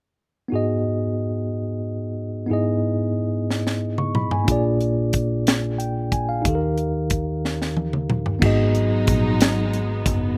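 Soulful and fervent, this slow gospel passage in a straight 6/8 is cut from a longer piece and opens on a clean tine electric piano, placed up front and heard through its built-in speakers, laying down chords that move from G#m7 through Emaj7/G# and A#7 to D#. At 3.5 seconds a crisp fusion drum kit arrives with a drum fill, its high-tuned snare, tight kick, hi-hat, toms and crash cymbal sounding airy and polished in a studio room, and it plays a second fill before the harmony returns to G#m7. At 8.4 seconds a fingered electric bass slips in beneath, foam-muted and direct, sitting in the background. A lush, bowed string section joins at the same moment with focused, close sustained chords carrying vibrato. The mix is dry, with little reverb and scant sense of a surrounding space.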